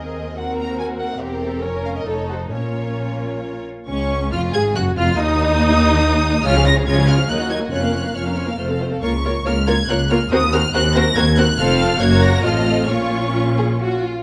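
A quick classical-period movement for string orchestra in Bb minor, this short passage cut from a longer piece moves in 3/4 at roughly 129-145 BPM with a rubato feel and a stormy, urgent mood. A violin section carries the melody across a range of Bb4 to Bb6 with a smooth top and soft attack, while a second violin section supplies a rich, focused second line beneath it. A distant-sounding viola section fills in the accompaniment, and the cello and double bass sections share the bass, the basses adding a woody depth that reaches down to E1. All five sections play bowed with vibrato throughout the roughly 14 seconds, and the harmony moves restlessly through half-diminished and dominant chords back to Bb minor, with a brief break in the harmony at 5.2 seconds. A moderate recital hall reverb gives the lush ensemble a natural sense of space.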